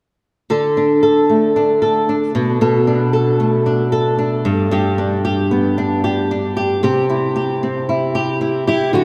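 A flamenco guitar opens at 0.5 s with warm, up-front fingerpicked accompaniment, finger squeaks and a subtle chorus over D5, Bm7, G and C in a carefree, heartfelt 114 BPM pop excerpt, soaked in dreamy cathedral reverb, before a full-bodied steel-string dreadnought with analog chorus adds a brief fingerpicked melody at 8.7 s.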